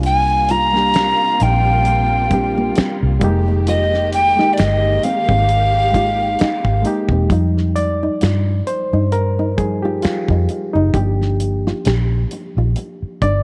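Soulful and sultry, this slow, lightly swung neo-soul and R&B passage is cut from a longer piece. A breathy, hollow soprano recorder carries the melody up front, its tongued notes showing a wooden chiff, vibrato and a slapback echo. Beneath it, a bright, reedy electric piano comps through its built-in speakers, while a lush, woody string section holds dark bowed chords until 7.3 seconds. A foam-muted vintage electric bass sits round and prominent, and a damped 70s drum kit with a fat snare, tight kick, hi-hat and finger snaps keeps a dry, rolled-off groove. A thumb-plucked nylon-string guitar adds a soft second line in the background, and once the recorder and strings drop away, the electric piano takes a solo from 7.3 seconds to the end, all set in light reverb and studio ambience.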